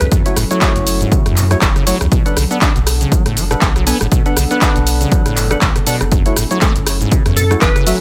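A swung 4/4 groove drives this raw, hypnotic acid house excerpt, with a punchy, up-front electronic kick and an analog drum machine of handclaps, hi-hat, rim click and shaker, while a deep, round sub bass and a squelchy, resonant, saturated sawtooth acid riff with tube saturation, cassette tape grit and dub echo pump under the sidechain. Behind them a dark, warbling, lo-fi pad holds nostalgic detuned chords with chorus and built-in reverb, and from 0.3 seconds a hollow, organ-like percussive stab with lush chorus and dub echo punctuates the mix. A glassy, crystalline wavetable pluck with ring modulation and a filter sweep sounds its short melody only at the opening and again from 7.4 seconds, in a dry room.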